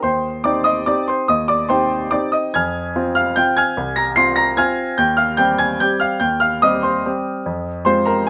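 A 3/4 waltz pulse at 145 BPM, pulled about by rubato and uneven beats, carries this elegant, nostalgic classical piano piece in C minor, cut from a longer work. A clear grand piano plays alone from 0.0 to 8.3 seconds, ranging from C2 to C7 and sitting present and up front, as the harmony sways between Cm/Eb and Fm. Close, detailed miking catches the instrument with light reverb around it.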